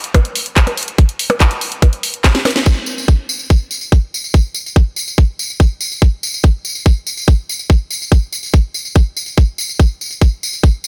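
Alien and intense, this trance excerpt is driven by a tight, layered electronic kick drum that sits up front from just after the opening moment nearly to the end. For the opening 2.7 seconds, a techno drum kit of crash cymbal, handclaps, hi-hat, percussion blips and a cracking snare, low-pass filtered and re-recorded in a large room, plays a drum fill topped by a band accent before dropping away. A jingly, close acoustic tambourine then takes over beside the kick in a dry mix with little reverb.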